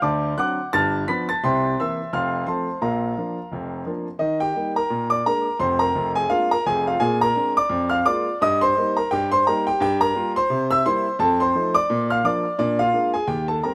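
Swinging and exuberant, this fragment of a longer stride jazz piece features a solo concert grand piano, up front and intimate, with deep bass, a boxy tone, long sustain and audible action noise, framed by slapback echo and light reverb in an open outdoor setting as it runs a chain of dominant chords before settling into a new section at 4.2 seconds.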